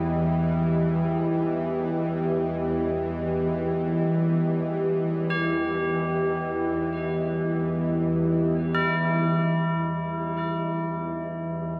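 A tense, string-like bowed drone sits up front with vibrato and a filter sweep running until 8.8 seconds, beneath a deep, detuned pad of sustained, chorused chords and solemn, metallic tubular-bell arpeggios trailing diffuse delay, giving this ominous, cavernous dark ambient excerpt a long cathedral reverb and lossy compression artefacts.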